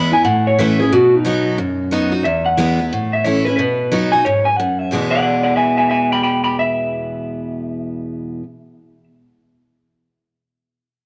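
Light reverb and a small-room ambience frame this rollicking, upbeat rock clip at 181 BPM in E major with a swung eighth-note feel, as a twangy, slightly broken-up electric guitar through a small old amp carries the melody up front with tape echo until 9.0 seconds, while a bright, full-bodied picked steel-string acoustic guitar plays the accompaniment beside it until 8.4 seconds.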